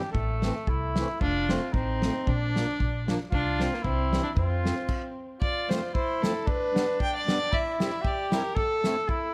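The close, detailed sound with light reverb frames a jolly, bouncy alpine folk dance in F major at 114 BPM in a swung 2/4, cut from a longer piece, where a warm, gut-string fiddle with tape echo carries the bowed melody up front, a mellow, roomy trumpet plays a classical-style second line, a sweet, dark accordion with light tremolo tuning gives smooth accompaniment, a woody pizzicato upright bass plays until 4.7 seconds, and a loose indie drum kit with a medium-tuned snare and tight kick drives the beat before a stop from 4.9 to 5.4 seconds.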